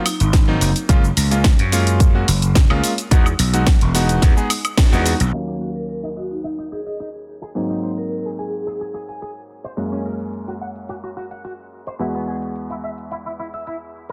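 A growly, overdriven slap bass and a punchy, up-front electronic kick drive the opening 5.3 seconds of this sleek, sensual nu-disco piece at 108 BPM, over a tape-warm house kit with a cracking snare, hi-hat, shaker and woodblock, and a clear, clangy vintage electric grand piano carrying the chords through sampler grit, sidechain pumping and dub echo. After a band accent at 4.8 seconds, the bass and kick drop away, and a twangy, picked electric guitar with an envelope filter and lush chorus enters alongside the piano as a filter sweep runs across them. A metallic, ringing vibraphone played with hard mallets adds a brief airy melody with delay over chords moving from Ab7 through Ebm7 to E, all within a dense, heavily limited modern mix with light digital ambience.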